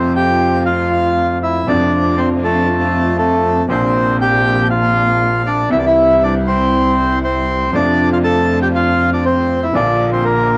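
Passionate and sultry, this short tango cut from a longer piece moves with a rubato feel as a reedy, up-front bandoneon carries the melody over a brilliant, woody upright piano and dark, soft-attack chamber strings adding stabs from the background, both with a cassette-tape character, while a single bowed double bass gives a nasal, earthy bass line, all in a wet small room with a homemade cassette sound as the chords pass from F through Dm7/F, Bbadd9, C and F6 to Bb.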